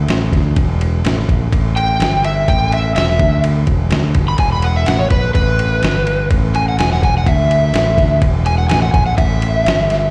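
Heard as a live gig through the venue's PA with a recital-hall reverb, this gritty, swaggering slice of blues-rock power-trio and southern rock, cut from a longer piece, moves at a straight 125 BPM in 4/4. A growling, bright fingered electric bass with overdrive sits up front from the start, alongside a dusty, compressed sampler-style soul kit of thumpy kick, medium-tuned snare and ride cymbal. At 1.8 seconds a dark, overdriven slide guitar with slapback echo takes the solo, riding high over the groove.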